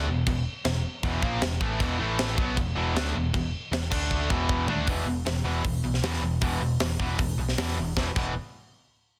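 A swaggering, anthemic hard rock excerpt opens on a wall of bright, overdriven riffing from a distorted electric guitar and a cranked stack guitar, backed by a double-tracked, high-gain heavy guitar that drops out at 4.9 seconds, all moving through E5, A5 and D5 power chords. A growly, punchy overdriven picked bass anchors the low end, while a tight metal drum kit, up front with a high-tuned snare and rolled-off top, comes in at 0.3 seconds and throws a fill from 4.1 to 4.9 seconds. The mix sits in light reverb under a dense, heavily limited modern master.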